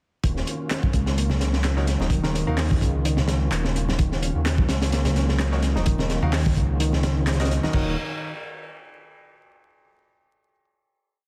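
A funky, gritty breakbeat track at 128 BPM in Eb minor, built on a swung 4/4 groove over Ebm7 that closes on a final chord from 7.7 seconds. Up front sits a crunchy, saturated drum break with a punchy kick, high-tuned snare and dark cymbals, looped with edits and rolled off at the top, while a layer of overdriven electronic handclaps sits over it and soft-handed congas tap quietly in a small room. A deep, rumbling detuned saw bass, beating in unison, holds long gliding notes. A reedy electric piano, dirtied with overdrive, 12-bit sampler grit, filtering and delay, repeats a 32-step riff in the background, and a very quiet tonewheel organ with key click and slow rotary speaker lays down a fat sustained pad. Brilliant grand piano stabs, filtered and echoing, appear briefly near 1.8 seconds and return from 5.5 seconds, all under a dense, heavily limited master flecked with vinyl crackle.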